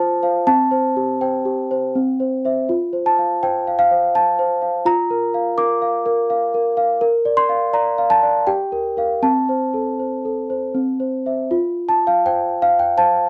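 In a straight 3/4 at 82 BPM, this tender, dreamy classical lullaby excerpt in F major features a solo celesta, bell-like and sweet with medium felt hammers, close-miked and up front, moving through a progression that returns to F at 11.5 seconds within a small room and a dark, warm production.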